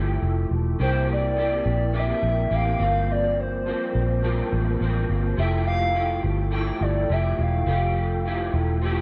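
A slightly broken-up electric guitar, run through a small old amp, opens this short cut from a longer indie and bedroom pop piece alongside a round, foam-muted fingered bass that sits up front in the mix. The guitar's picked accompaniment carries an ensemble chorus and a warbly pitch drift, giving it a lo-fi, hazy wobble. At 0.8 seconds a hollow, woody synth lead with a clarinet-like quality enters with the melody, soft and sustained, with vibrato and a lush chorus. Its detuned square and triangle tones, with a noise layer, float in a high register over a straight pulse. The harmony drifts from Fmaj9 through C7 and Gm11 before settling back on Fmaj9. Light reverb, digital ambience and a dark, warm production keep the mood dreamy and softly blurred.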